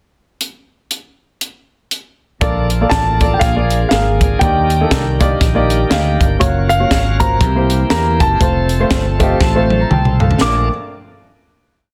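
A crisp fusion drum kit opens the piece alone with a pickup bar, its punchy kick, high-tuned snare and dark cymbals driving a two-beat praise groove in this soulful, uplifting uptempo gospel number with a swung feel. At 2.4 seconds the band joins: a round, up-front fingered electric bass walks and runs with slides and chromatic approach notes, while a woody upright piano plays rhythmic chords with short fills. A bright, shouting tonewheel organ with light overdrive, key click and a slow rotary speaker holds sustained chords beneath, and a mellow French horn section adds a very quiet, tight pad with light vibrato. From 2.9 seconds an intimate grand piano, its action noise audible, carries a motif-based melody of call phrases over a breakdown. An upright piano fill and a drum fill lead into a final Bbmaj7 chord at 10.4 seconds, captured with studio ambience, light reverb and a dense, heavily limited modern master.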